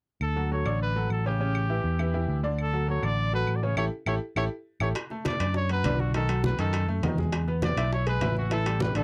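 A fast, straight 4/4 salsa groove at 202 BPM in D major, cut from a longer piece, opens with woody claves clicking close until about 4.9 s while a warm, amped picked electric bass sits up front and a bright, slightly detuned upright piano, its action noise audible, fills in the harmony. A punchy, vintage-toned solo trumpet carries the sunny, danceable melody with scooped notes over chords moving between D and A7, and after a band accent at 3.8 s the second section at 5.0 s brings in low-tuned congas and round bongos in the background along with ringing metal-shell timbales as the harmony shifts through B7 and E7 to an A7sus4. The dry, close 1970s-style studio sound keeps the horn and bass in your face while the hand drums sit further back.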